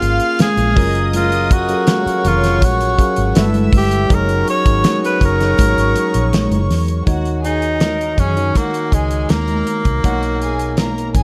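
A close, small-room sound frames this silky, cinematic excerpt of lush 1970s-style soul in Eb minor at 81 BPM, where a breathy, whispered tenor saxophone with tape echo carries the melody up front and takes a solo from 7.1 seconds. Beneath it, a reedy chamber string section with gut-string tone and light vibrato traces a second line, a clean tine electric piano through a combo amp supplies accompaniment, and a smooth-topped horn section adds background stabs until 6.7 seconds. A dark, foam-muted fingered electric bass and a dry, damped 70s drum kit with a fat snare and tight kick anchor the groove, while bright, high-tuned congas enter at 0.4 seconds from a distant, large-room space.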